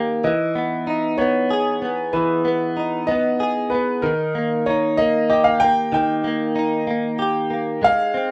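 A concert grand piano carries the melody from 0.2 seconds, its intimate, natural tone full of deep bass and audible action noise. This tender, heartfelt pop ballad moves at 63 BPM in a straight 6/8, with a double-tracked clean electric guitar, recorded direct, bright, picked and compressed, sitting up front as accompaniment from the start. The excerpt moves from Emaj7 to Eb at 4.0 seconds, with moderate studio reverb giving it the rough feel of a home demo mix.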